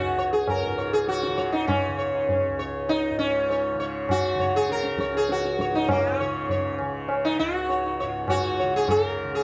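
Serene and radiant, this brief cut from a longer Hindustani classical piece in raga durga on Db moves at 100 BPM in a straight 7/4, with an up-front, bright sitar carrying the melody through buzzing sympathetic strings and a tape echo over a softly plucked, warm tanpura drone, while a low-tuned, ringing tabla enters at 0.5 seconds, all set in a short studio reverb and coloured by the warbly pitch drift of worn cassette tape.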